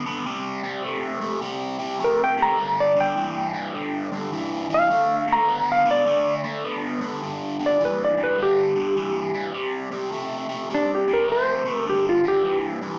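Gritty and rollicking, this swung blues excerpt sets a bright, overdriven stack guitar riff, colored by phaser and slapback echo, against a dark, clean lap steel slide melody that enters at 2.0 s with its own slapback, both parts up front in a plate-reverb haze heard through a club PA with small-speaker tone and room ambience.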